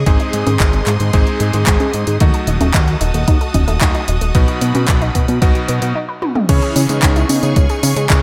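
Nostalgic and bittersweet, this italo disco excerpt sets a thumpy, overdriven electronic kick and a layered house kit of congas, handclaps, bright hi-hats, tambourine, toms and crash with gated reverb under a fat, tube-saturated analog bass, clangy electric grand piano stabs with delay, distant, lush string chords and a nasal, chorused analog pluck arpeggio that carries a filter sweep until a brief break and drum fill around 6.2 seconds lead into a dark, round synth brass melody at 6.5 seconds.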